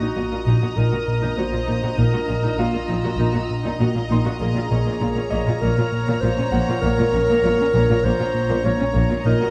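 A moderate scoring-stage reverb surrounds this tense, mysterious suspense cue, cut from a longer film score, where sul tasto strings hover over a low, swarming granular drone and a fat, saturated analog bass riff. A warm violin section carries a melody on a single pitch with light vibrato, a clear, floating second violin section and a dark, smooth solo clarinet weave second lines, and a higher violin texture with soft attacks drops out at 4.1 s. Background violas, close cellos and symphonic double basses fill out the pure, bowed low end, while a very quiet, brilliant grand piano adds high texture with audible action noise and long sustain.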